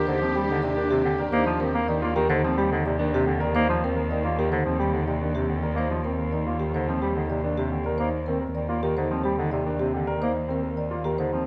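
Heard in a moderate recital-hall reverb, this bright, hypnotic excerpt of minimalist classical pattern music in Eb major moves at 108 BPM on an Ebmaj9 chord, with a woody soft-mallet marimba carrying the melody over intimate baby grand piano arpeggios with audible action noise, a vintage-toned bass clarinet accompaniment and a rich, focused bowed cello holding Eb2 up front, while a clear, distant clarinet second line and a lush string section with vibrato and portamento play only until 2.1 s.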